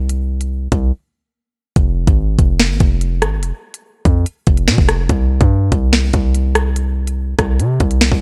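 Set in a cold digital ambience, this excerpt of menacing drill hip hop rides a half-time feel, with a hard-hitting 808-style bass sitting up front from the start, punchy and heavy with a sine body, a noise layer and a fast attack that decays. The electronic drill drum kit enters at 0.1 seconds, its knocking kick, sharp snare, rim click and crisp hi-hats coated in vintage 12-bit sampler grit. A break arrives at 0.9 seconds, and the track moves into a new section at 1.8 seconds.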